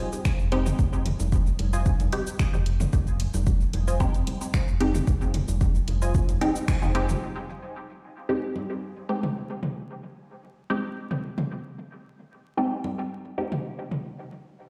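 A straight 4/4 pulse at 112 BPM drives this nocturnal, meditative dub techno excerpt, with a punchy, overdriven electronic kick and a round, nasal analog bass on F1, the bass pumping under sidechain, both running until about 7 seconds. Meanwhile a tape-warm analog drum machine adds filtered cabasa, finger snaps and hi-hat, and layered electronic toms and congas, re-recorded in a small room, spread dub echoes across nearly the full 14.7 seconds. Two filtered dub chord stabs carry the harmony from Fm7 to Abmaj7: a detuned, chorused riff from F4 to Ab5 ends near 7.1 seconds, and a resonant, wave-folded lower stab with phaser sits bright and up front until 13.5 seconds. A band accent lands at 6.7 seconds, and the whole piece sounds as if played on a big sound system in a bare room, wrapped in lush hall reverb with vinyl crackle.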